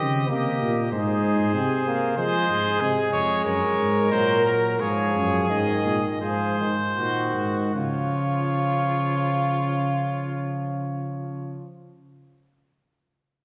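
A reverberant recital-hall sound, as if heard in a church or concert hall, surrounds this lively, joyful excerpt of a classical imitative canzona for brass ensemble in a straight 4/4. A warm trumpet carries the melody up front alongside a mellow, smooth-topped tuba on the bass line with light vibrato, while a clear flugelhorn with gentle vibrato sings the second line and a roomy trombone supplies accompaniment, both set farther back. The music slows from 0.9 to 7.7 seconds, arriving on a brief contrasting section at 7.7 seconds.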